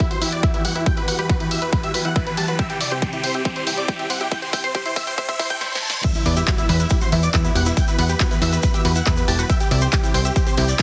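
An overdriven, punchy electronic kick drum sits up front through this driving, euphoric slice of uplifting trance, joined by a punchy analog drum machine whose snare, handclaps, hi-hat and crash cymbal were re-recorded in a large room. Over it a huge, detuned supersaw lead carries the melody with tape echo and sidechain pumping, while a catchy, mellow unison lead with a moving notch and delay traces a second line higher up in the background. A silky, string-like analog pad holds sustained chords on Emadd9 and C beneath a round analog pluck whose arpeggios move under a filter sweep during the build-up, with a riser, drum fills and a reverse cymbal pushing toward the drop at 6.0 seconds. There an impact hits, a grainy shekere enters, and a funky, sawtooth analog bass arrives at 6.3 seconds, pumping against the kick. The whole is heavily compressed, with a light reverb and a thin, radio-like high-pass filter.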